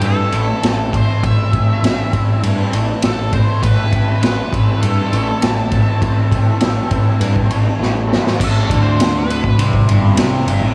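A straight 4/4 groove at 101 BPM drives this mysterious, hypnotic psychedelic rock piece in A minor, where a boomy, gritty garage drum kit with analog delay sits up front, a round, punchy fuzz bass pushes underneath, a bright, double-tracked overdriven guitar riffs through flanger and delay, a dark octave-fuzz lead guitar sings its melody through wah, distortion and delay, and a soft, floating string section holds sustained chords in the background, set in an echo-heavy studio reverb, with a drum fill at 7.8 s leading into a lead guitar solo at 8.4 s.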